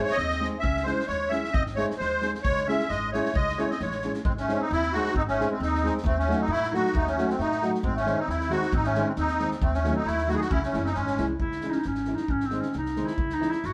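A straight 2/4 pulse at 134 BPM drives this virtuosic, bittersweet Balkan wedding-band excerpt in C# harmonic minor, where a reedy, shimmering musette accordion carries the melody up front until 11.3 seconds, a clear, soft-attacked clarinet plays a distant second line before taking a solo at 11.4 seconds, a small thumb-plucked nylon-string guitar with audible finger squeak supplies accompaniment, a woody pizzicato upright bass anchors the low end, and a roomy country drum kit with a punchy kick, medium-tuned snare and rolled-off top keeps time, all played live together in a stone room with moderate reverb.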